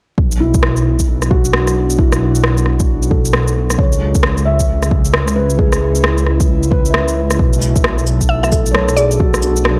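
A swung, shuffling future garage groove of deep, tape-softened kick and electronic shaker, rim click and cabasa, re-recorded in a large room, carries this melancholic, ghostly passage cut from a longer piece, moving from Bm7 to C#m7 and back. An up-front, menacing detuned saw bass swells beneath a breathy pad sitting in the background, both pumping against the kick, while a felt-muted upright piano with audible action noise adds a dark, intimate accompaniment roughened by vintage 12-bit sampler grit and tape echo. Near the close, a glassy harmonics texture drifts in at 8.0 seconds and a woody, round mallet-like synth pluck sounds a brief phrase from 8.3 seconds, all within a dry, gritty recording dusted with vinyl crackle.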